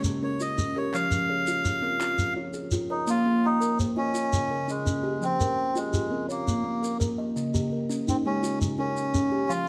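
A reedy, nasal melodica carries the melody from the very start, sitting up front over two interlocking kalimbas and a grainy shekere in this short excerpt of a Southern African traditional piece built on an mbira-style cycle in a straight 12/8. One kalimba has a hollow-box, buzzing character with short, soft fingertip plucks, while the other rings out from a solid board with dark thumb-plucked tones, and together their arpeggios weave a hypnotic, trance-like pattern. The shekere adds an acoustic, small-room texture close to the listener, and a crisp group handclap drifts in the background between 0.8 and 2.2 seconds. Around 3.1 seconds the music moves into a new section as the harmony cycles through Db, F minor and B-flat minor. A moderate recital-hall reverb gives the ensemble a gentle sense of space.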